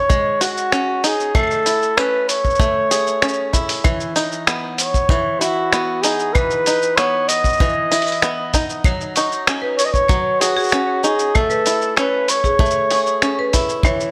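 A mellow, distant flugelhorn with light vibrato and a soft attack carries the melody over twangy, fingerpicked banjo arpeggios, both touched with tape echo, as a tight acoustic kick and a muffled, pitched-down sampler-style kit of cabasa, claves, finger snaps and hi-hat set a straight 96 BPM folktronica pulse in C# minor within a small-room ambience, and a bright hard-mallet marimba adds a second line with digital delay from 9.2 seconds in this delicate, autumnal fragment cut from a longer piece.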